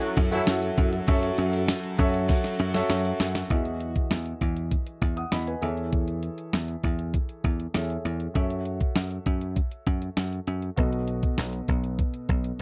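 Opening on a thumpy 12-bit drum machine with a fat snare, an intimate grand piano with audible action noise, a silky, very quiet string machine and a biting overdriven guitar in the background, this romantic, nostalgic 1980s-style pop piece at 99 BPM in E major brings in a punchy, foam-muted slap bass at 0.2 s, with a drum fill from 2.3 s and the strings and guitar gone by 4.0 s, moving through chords such as F#m7, Emaj9 and B7 in a dry, close studio sound.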